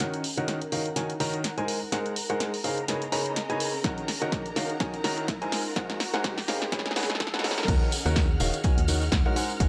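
A dry, gritty hardware sound with light reverb and a studio ambience frames this soulful, energetic piano house cut from a longer piece, moving at 125 BPM in Eb minor with a 16th-note swing. A clear, woody upright piano sits up front with audible action noise and short sustain, playing a riff through sidechain pumping, a low-pass filter and tape echo. Behind it a dark, lush symphonic violin section holds bowed chords with vibrato under a filter sweep, while a very quiet granular cloud pad drifts in blurred, evolving layers. A punchy analog drum machine drives hi-hat, snare and crash through a build-up and drum fill over chords cycling Ebm7, Ab9 and Db9sus4, joined by a distant electronic riser from 2.8 seconds and a dry, up-front electronic kick at 3.8 seconds. The drop lands at 7.7 seconds, bringing in a hollow, organ-like FM bass with fast, decaying notes, a tambourine and a very quiet, smooth jazz kit with dark ride cymbal and snare.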